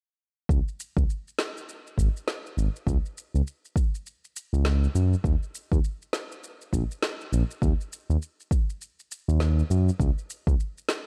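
A smooth synth bass, built from sawtooth and triangle tones with a fast attack and sustained notes, sits up front in this meditative organic downtempo excerpt in Eb minor at 101 BPM, processed with tube saturation and sidechain pumping. A deep, layered electronic kick anchors the swung 4/4 groove, with a quieter electronic shaker and woody snare behind it, both drum parts carrying studio reverb. All three parts enter at 0.5 s inside a dark, warm digital ambience.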